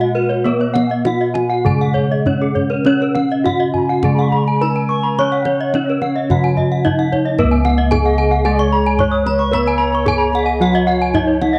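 This Balinese gamelan excerpt in Db slendro moves at 100-112 BPM in a straight 4/4, with a shimmering, ceremonial mood. A bronze metallophone carries the melody over a lower metallophone accompaniment, while two bright, horn-mallet metallophones spin ringing arpeggios whose paired tuning creates shimmering beats. Round, dry bossed gongs anchor the bass, a deep kendang struck with hard hands sits in the background, and a distant, reedy bansuri with vibrato traces a second line, all in a small-room echo-chamber ambience before the music shifts into a new section at 7.4 seconds.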